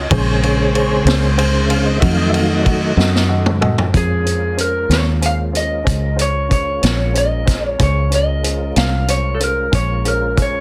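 A slow 12/8 blues at 62 BPM with a straight feel, this mournful, soulful excerpt in B-flat minor moves from Bbm7 to F7b9 and back. A tonewheel organ carries the opening as a solo through 3.9 seconds, its clear, clean chords shimmering with chorus vibrato and a slow rotary speaker, while a very quiet, mellow saxophone section holds tight sustained chords with light vibrato underneath. A saturated vintage drum kit sits up front with dark cymbals, a medium-tuned snare and a tight kick touched by soft clipping, and it plays a fill just before the second section. The fingered electric bass is round and foam-muted, and a woody upright piano with short sustain keeps to the background as accompaniment. At 4.0 seconds an electric guitar through a small old amp takes the melody, its picked tone slightly broken-up, compressed and lo-fi. Light reverb surrounds a dense, heavily limited modern master.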